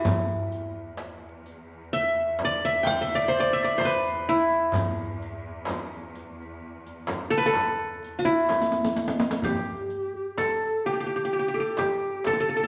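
A bright-edged, fingerpicked qanun leads this hypnotic, melancholic Arabic maqam ensemble piece in E bayati at 128 BPM in a straight 10/8, up front over a lush bowed cello-section drone on E2, a crisp, deep metal-shelled darbuka in the background, a soft-handed frame drum and a close, dry riq with dark jingles, until a drum fill at 8.5 seconds gives way at 9.5 seconds, as the cellos stop, to a mellow, breathy jazz-style clarinet solo with vibrato, all within a roomy studio reverb and a layer of vinyl crackle in this fragment of a longer piece.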